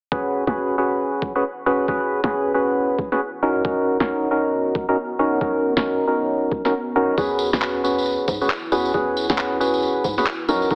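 Squeezed into a heavily compressed AM-radio sound with a moderate plate reverb, this sunny, bouncy two-step UK garage excerpt at 136 BPM swings its 16ths as an up-front, hollow, chorused organ stab with digital delay rides over a gritty, pitched-down overdriven kick and a cracking, tape-tinged layered snare and handclaps under a filter sweep, while a deep, dark, detuned sawtooth pad fades in from 1.7 s and a punchy, knocking FM bass and jingly tambourine join at 7.2 s as the chords move from E6 to Bmaj9 and back to E6.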